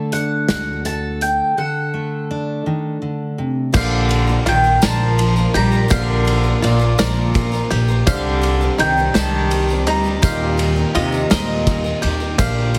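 A mellow, round mandolin with slapback echo carries the melody through this stirring, bittersweet indie folk excerpt in 6/8, first over a bright fingerpicked steel-string guitar, a loose, dark-cymbaled drum kit and a woody, thumpy upright bass up front, with a break arriving at 1.6 seconds before the guitar gives way at 3.7 seconds to a fuller arrangement of reedy bowed cello, a very quiet felt-muted upright piano, a shimmering twelve-string guitar, sustained chords from a warm brass ensemble, twangy banjo arpeggios and a jingly tambourine, all in a small room with a heavily compressed, radio-like sound.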